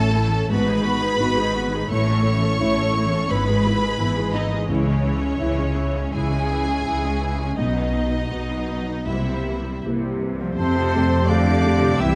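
Rubato and tender, this hopeful cinematic orchestral cue sets a focused, distant violin melody over a smooth second violin line, a lush viola section, a felt-muted upright piano with audible action noise, mellow ringing harp arpeggios and a bowed bass of cellos and double basses, until at 10.6 s a pure flute, a background oboe and clarinet add second lines while a dark, very quiet French horn section holds sustained chords, all within a moderate concert hall reverb.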